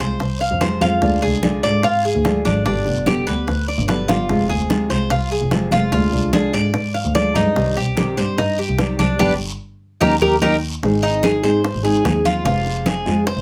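A fingerpicked nylon-string guitar, a metallic double-stringed Cuban tres playing mellow up-front arpeggios, and a biting, earthy bowed double bass open this warm, danceable excerpt of Cuban son and guajira at 147 BPM in a straight 4/4, moving through Fm, Ddim, G and Cm. Round low-tuned bongos and bright damped congas join in the background almost at once, along with a raspy, close guiro. A drum fill comes at 4.1 seconds, a band accent from 9.2 seconds, and a new section from 10.8 seconds that shifts to Ab, all in a moderate studio ambience.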